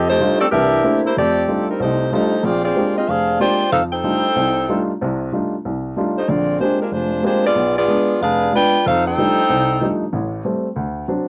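A mellow saxophone section carries the melody up front, its smooth top and light vibrato giving the ensemble a relaxed jazz sound. Beneath it, an upright piano supplies woody, present, polished accompaniment with a short sustain, reaching down into the deep bass register. The feel is joyful and swinging, a brisk jazz groove in 4/4 built on rich thirteenth chords, with a diminished chord and a closing turnaround adding color. Both parts carry the soft grain of a home cassette recording, set in a moderate studio ambience. Cut from a longer piece, the saxophones drop out at 10.0 seconds, leaving the piano alone until 11.3 seconds.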